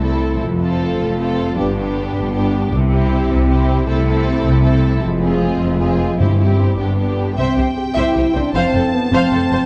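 Soaring and triumphant, this heroic adventure-film excerpt moves in 6/8 at 104 BPM in C major, building through its first 7.4 seconds, with a darkened F minor turn before it resolves onto C and F. Bowed violins carry a smooth, lightly vibrato melody over a lush, expressive second violin line, while violas add close, focused accompaniment, mellow French horns hold sustained chords, and rich cellos join the double basses on a deep bass line. A round, soft-mallet timpani note sounds briefly at 6.2 s, and the orchestra sits in a moderate scoring-stage reverb within a dark, warm production.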